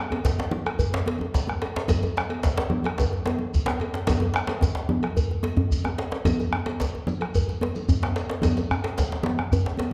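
A dark, reverberant recital-hall sound frames this festive, driving West African drum ensemble excerpt at 110 BPM in a straight 4/4, with a deep bombo, a warm soft-handed djembe up front, a tight cracking djembe in the background, ringing high-tuned congas, a metallic cowbell and a grainy, distant shekere all playing together from the start, the bombo and shekere dropping out around 9.6 seconds while the rest carry on to about 9.9 seconds.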